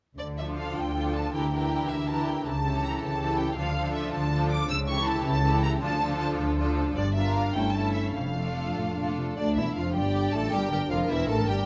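Classical orchestral music in D minor, this is a fast, dramatic romantic movement in 6/8 at 105 BPM, with a rubato feel and an urgent mood. A violin section carries a lush, expressive melody with vibrato and a smooth top, sitting high above a second violin line that moves evenly beneath it, while violas fill in the accompaniment. Dark, woody cellos and warm, woody double basses anchor the low end, and a bright concert harp rings out arpeggios in the background. The harmony moves from D minor through Em7b5/D and A7/C#, and at 9.4 s a mellow French horn section enters with sustained chords as the opening passage begins again. Close, detailed microphones and light reverb keep the bowed textures clear in this fragment cut from a longer piece.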